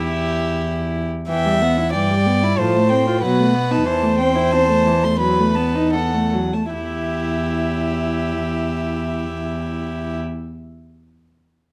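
A quick, urgent and stormy classical-period movement for string quartet, cut from a longer piece, in which a gut-string first violin carries the high melody over a nasal, airy-bowed second violin sitting up front, a smooth-topped viola accompaniment and a dark, close cello bass, all played in period style with a reedy edge and light reverb, easing back from 3.2 to 6.7 seconds.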